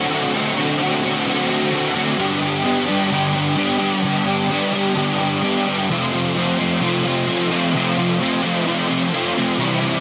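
A straight 4/4 rock pulse carries this wistful, hazy fragment, where a lone overdriven semi-hollow electric guitar, picked and double-tracked up front with a hollow-bodied glow, drifts through D7, G and F under analog chorus, tape echo and a huge ambient reverb.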